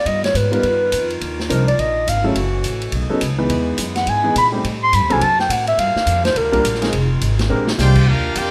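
Joyful, brassy big band swing at 210 BPM, this snippet from a longer piece features a breathy, intimate clarinet solo with scooped notes and vibrato over smooth sustained saxophone section chords, a woody, thumpy pizzicato upright bass, a vintage small-room drum kit with a punchy kick and a fill at 7.5 seconds, and accompaniment from a concert grand piano with audible action noise, before a brilliant trumpet section and a veiled cup-muted trombone section enter at 7.8 seconds, all under light reverb.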